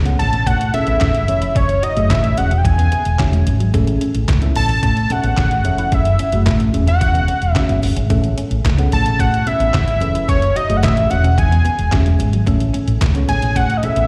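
A fat, detuned sawtooth lead with slapback and tape echo carries the melody over a dark, round fretless bass, a thumpy, sampler-style 8-bit drum machine with handclaps, a soft FM electric piano washed in chorus and phaser, a bright, twangy clean guitar riff in the background, and very quiet low-tuned congas, all cycling through Amaj7, F#m9 and E69 in this danceable, slick early-eighties boogie funk excerpt heard as a live gig through the venue's PA with recital hall reverb.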